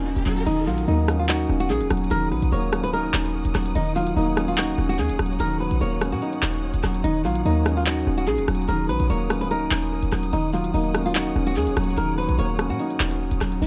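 A punchy, tight 808-style bass sits up front in this dark, menacing drill excerpt at 146 BPM with a half-time feel in Eb minor, joined by a fingerpicked acoustic flamenco guitar melody, a soft felt-muted upright piano with filtered tape echo, crisp electronic drums with hi-hats, handclaps, rim clicks and crash cymbal, and a lush, bowed string section in the background, with an electronic riser opening the first 0.5 seconds and a downlifter closing at 13.6 seconds in an echo-heavy, small-room mix.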